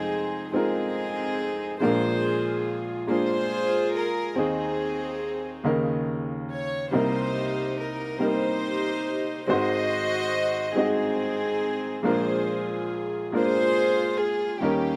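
Dry, up-front outdoor sound frames this 15-second excerpt of uplifting, reverent gospel in a slow 6/8 at 47 BPM (dotted quarters), where a rich chamber string section carries the melody with soft-attack, floating sul tasto bowing touched by slapback echo, over a clear, boxy baby grand piano whose short-sustain accompaniment moves from Fm7 through Bb7, Ab/Eb and Cm7 before resting on Bb7.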